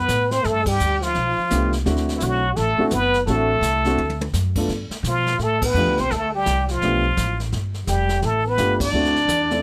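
Small-group swing and bop jazz at 169 BPM in a swinging, sophisticated mood, cut from a longer piece, with a brilliant, forceful plunger-muted trumpet carrying the melody up front over a breathy, whispered plunger-muted trombone second line, a woody pizzicato upright bass, a brushed kit with dark cymbals and a boomy kick that plays a fill at 4.0 seconds, and a grand piano entering at 1.5 seconds, all closely and drily captured with band accents at 0.6, 5.6 and 8.8 seconds.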